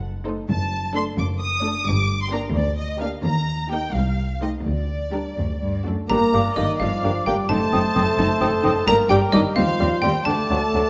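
Set on a moderate scoring stage reverb, this brief passage cut from a longer whimsical film cue in G minor moves at 87 BPM in a straight 6/8, with a mischievous, magical air as dark, portamento-inflected violins carry the melody over a second violin line, lush viola accompaniment and a bowed bass of cellos and double basses. At 6.1 seconds the texture brightens as a sharp, woody xylophone joins the melody, while a distant dark clarinet and a warm cor anglais add second lines and a roomy French horn section holds sustained chords in the background. A pure, silvery flute adds a further line at 6.3 seconds alongside a lightly vibrato bassoon in accompaniment, the harmony turning through an F#dim7 before settling on D at 10.3 seconds.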